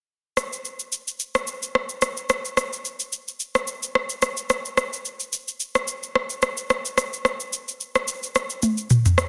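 A dense, heavily limited modern master with light reverb frames this short, smooth and hypnotic afrobeats fragment in 4/4, cut from a longer piece. An electronic, produced afro-pop drum kit sits up front with rim click, shaker and toms over a gently swung sixteenth-note feel, its kick muted from 0.4 to 9.2 seconds. A drum fill arrives at 8.6 seconds to close the passage.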